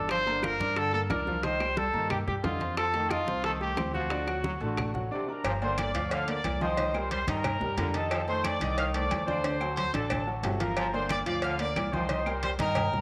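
Driving and passionate, this fast 180 BPM salsa cut in G minor opens with a punchy solo trumpet, vibrato-laced, distant and treated with slapback echo, over a clear vintage grand piano, a dark, thumpy gut-string upright bass played pizzicato, a tight bright trombone section, and background bongos and cowbell, ringing timbales and agogo bells, woody claves and hard-hand congas, before a tight, roomy trumpet section takes over the melody at 5.3 seconds, all within a wet echo-chamber reverb.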